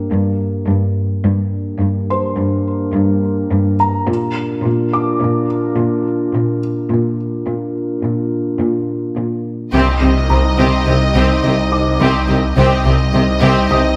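A rich, smooth cello section sits up front from the start, holding the bass beneath a deep, ominous drone that rumbles through sustained chords with its own reverb in this brooding, vast cinematic cue, a hybrid of orchestra and electronics in C minor at 106 BPM in 5/4. At 2.1 seconds a felt-muted upright piano adds a soft, intimate texture high above, its short notes carried by delay and its action noise audible. The opening builds over Gm and Bb chords until 9.7 seconds, when the harmony arrives on Cm and the full ensemble enters. A lush, distant violin section takes the melody with vibrato, supported in the background by a second, intense violin line, a viola section, a French horn section holding chords, and bowed double basses. The low end thickens further with a swirling, saturated detuned saw bass under a phaser and a very quiet, roomy tuba. A moderate recital hall reverb surrounds the ensemble, and the passage is cut from a longer piece.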